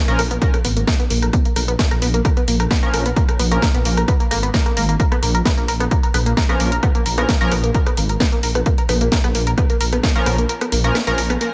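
Driving peak-time techno at 131 BPM in Bb phrygian, relentless and intense, built on a punchy, tape-warm electronic kick that pounds up front from 0.4 to 10.1 s beneath a deep, rumbling detuned saw bass with saturated pumping, a layered drum kit of cracking snare, rim click and hats re-recorded in a large room, a tight wave-folded sequenced synth riff colored by chorus, phaser, overdrive and delay, and edgy sync-sweep polysynth stabs with a nasal, bright filter sweep and digital delay that pause at 3.6 s, all set in light digital ambience.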